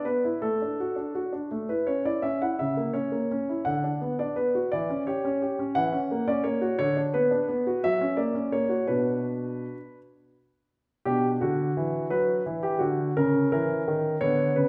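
Playful and elegant, this brief classical-period piano sonatina in B minor unfolds in 6/8 at 57 BPM with flexible rubato, its solo concert grand sounding warm, natural and up front with a deep bass, set in a wet recital hall reverb, and moving through chords such as D/A, C#m6 and F#7/E before a new section begins at 11.1 s and the passage breaks off at 14.7 s, cut from a longer piece.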